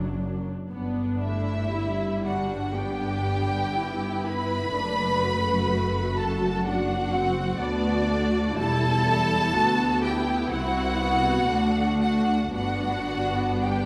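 Classical music for string orchestra, this slow romantic movement unfolds at 61 BPM in 4/4 with a tender, gently rubato feel in G major, taken from a longer piece. The bowed violas, cellos and double basses open at 0.0 seconds: lush, even violas carry the accompaniment up front, while focused, close cellos and clear, intense double basses with light vibrato hold the bass. At 1.2 seconds two violin sections enter, the upper one singing the melody with a rich, focused vibrato and the lower one shaping a smooth, warm second line beneath it. The harmony moves from D to G, then through D/F#, Em and C before resolving from D to G near the close at 13.9 seconds. A generous scoring-stage reverb surrounds the ensemble, lending the strings a spacious, glowing sound.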